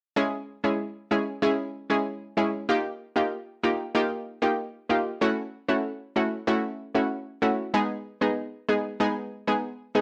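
At 0.2 s a lone analog pluck enters, setting a hypnotic, sultry dancehall mood at 95 BPM in a straight 4/4. Its sawtooth tone is round and vintage, with a fast attack, short decay and a filter sweep. A chorus effect and cassette tape coloring give it a warbling, bright character, and it sits up front, moving between G#3 and G#4. The pluck carries the harmony through C#m, D#add9, F#m7 and G#m, with a new chord arriving at 2.7 s and again roughly every two and a half seconds after. The whole passage has the feel of a home cassette recording, set in a wet studio reverb and tuned slightly sharp to A4 = 441 Hz, and it is cut from a longer piece, running until 10.0 s.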